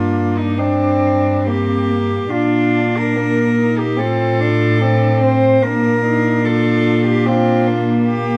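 Flowing in a rubato 4/4, this lyrical classical fragment for cello ensemble moves through Gm, Bb, F/A and back to Bb. Up front, a pure, floating cello bowed sul tasto carries the melody until 8.1 seconds, while a second cello with light vibrato adds an intimate inner line, a more distant cello supplies soft-attack accompaniment, and a rich, forward bass cello anchors the low end. Light reverb and close, detailed microphones give the ensemble a warm glow.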